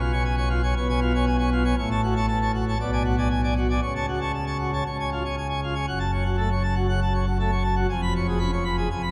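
Drenched in a cathedral reverb that rings for 5.1 seconds, this stormy, dramatic fragment of a classical organ toccata in F# minor at 119 BPM features a solo pipe organ on full plenum, its mixtures bright and brilliant in a romantic voicing placed up front, spanning E#1 to B5 and moving to a new section at 5.9 seconds.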